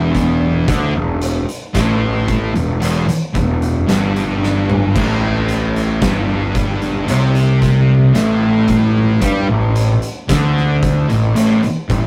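A rough rehearsal-room recording with tube saturation and light reverb frames this heavy, ominous stoner and doom metal excerpt at 56 BPM in 4/4, where three thick, distorted fuzz guitars sit in the background picking a riff from E2 to G3, one of them double-tracked, while an overdriven, growly picked bass rides up front from E1 to G2 and an oversized, low-tuned acoustic drum kit with dark cymbals, a fat snare and a punchy kick pumps in a big room, dropping a fill at 4.4 seconds before the harmony moves from Em to Gsus24 at 5.0 seconds.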